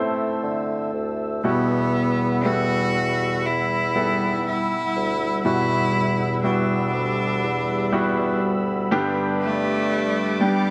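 In a straight 60 BPM 4/4 pulse, this melancholic, emotional pop ballad excerpt in E minor sets a clear, polished baby grand piano and a mellow bassoon bass with light vibrato beneath an airy, detuned sawtooth pad with chorus, while a biting, intense bowed cello carries the melody from 1.4 s, the parts sitting in a lush hall reverb as the chords move from Am to Emadd9 and then G.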